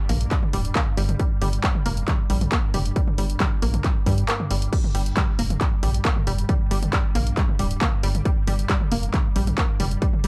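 A dark, dry mix opens this hypnotic, relentless slice of driving peak-time techno in G minor at 136 BPM, where a heavy, up-front kick and a tape-warm analog drum machine of crash, handclaps, hi-hat and toms join a pumping sawtooth sequencer bass and a detuned, warbling synth riff with chorus and delay, all over a very quiet, eerie FM drone, pausing for a brief break at 4.3 seconds.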